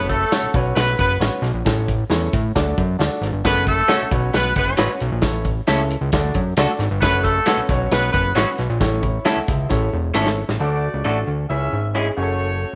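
Uplifting and danceable, this short cut of uptempo 1960s-style soul at 134 BPM in A major sets a tight, vintage horn section with light vibrato and slapback echo over a warm concert grand piano with deep bass, a fat, saturated analog bass and a punchy, natural country drum kit with a tambourine jingling in the background, while a slightly broken-up, lo-fi electric guitar adds stabs from 3.9 seconds and a drum fill at 9.7 seconds leads into a closing turn through D and C#m in a small, lightly reverberant room.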